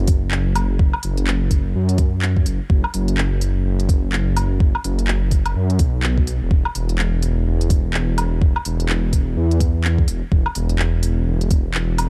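A deep, rumbling detuned saw bass sits up front from 0.0 s, its saturated, beating tone pumping under sidechain in this wistful, melancholic future garage excerpt at 126 BPM in 4/4, with a 60% swing on the sixteenths. From 0.1 s, an overdriven, layered knocking kick carries the groove until 11.6 s, alongside a quieter electronic kit of handclaps, smooth hi-hats and woodblock, both drum parts treated with overdrive and studio reverb. The production is dark overall.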